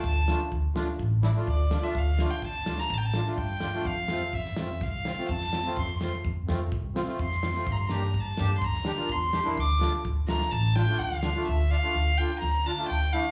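A warm, airy-bowed violin floats up front, carrying a pure, soft-attacked solo melody from the start to 11.5 seconds in this bittersweet yet festive klezmer excerpt in D minor at 126 BPM. Beneath it, a reedy accordion with light tremolo tuning supplies sweet, full, close-miked accompaniment, while a pizzicato upright bass adds a woody, dark low end. A natural country drum kit with a punchy kick and medium-tuned snare keeps a straight 4/4 pulse before dropping out at 11.3 seconds. The harmony moves from Dm to F, then Gm, and back to Dm, and the violin, accordion and drums all carry a slapback echo. The sound is of a live gig heard through the venue's PA, set in a small room with club and studio reverb, and the excerpt ends shortly after a new section begins at 11.5 seconds.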